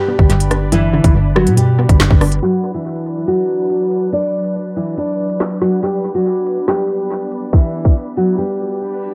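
A menacing, tense drill cut at 141 BPM in B minor, moving with a half-time feel over a G to B minor to G progression. A fingerpicked nylon-string guitar carries the melody up front throughout, its fresh strings giving a full-bodied, deep classical tone with audible finger squeak, softened by a low-pass filter and tape echo. For the opening 2.4 seconds, a hollow, nasal square-wave pluck with chorus bounces beneath it, while a growling, buzzy 808-style bass sits up front in the same stretch. A glassy FM pad sustains ethereal chords far back in the mix, and an electronic drill kit of hard-clipped kick, woody snare, crisp hats, handclaps and rim clicks sits up front with tape echo. A filter sweep runs from 2.4 seconds to the end, and the drums drop out for a short break at 8.4 seconds, all set in an echo-heavy digital ambience.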